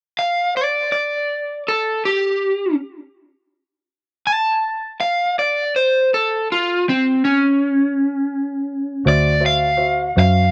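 Dry, lightly reverberant sound frames this gritty, swaggering slow blues excerpt in 12/8 at 54 BPM: an up-front, overdriven semi-hollow guitar with slapback echo carries the dark melody alone until a woody upright piano slips in at 9.0 seconds and a round, foam-muted vintage electric bass joins at 9.1 seconds on a D7 chord.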